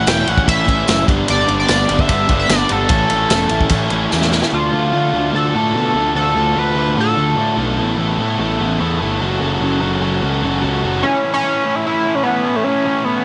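Indie rock with a jangly, carefree mood, moving at a brisk straight four-beat pace through a short cut from a longer piece. An edgy, tearing sync lead with vibrato and chorus carries the melody up front, dropping out at 7.6 seconds and returning at 11.0 seconds for the closing stretch. Underneath, a biting overdriven guitar with analog chorus and tape echo shares the riff with a sludgy distorted guitar, while a fuzzy, up-front picked bass anchors the low end until 11.0 seconds. A vintage acoustic kit with a punchy kick, dark cymbals and a mid-tuned snare drives the opening alongside a jingly tambourine set back in the background, the drums closing with a fill that ends at 4.5 seconds. The chords shift from A and G to a darker Dm, Asus2 and F#m passage before landing back on A, all heard in a small room with a rolled-off top.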